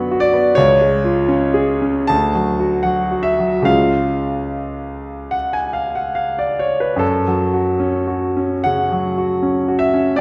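Opening on a B minor chord over an F# bass and moving through C#, D and back to C# before settling on F# minor at 7.0 seconds, this stormy, bittersweet romantic character piece for solo piano unfolds in a flexible rubato, its bright, brilliant concert grand sounding up front, natural and deep in the bass from C#2 to A5, bathed in a wet scoring-stage reverb across a brief 10.2-second cut from a longer work.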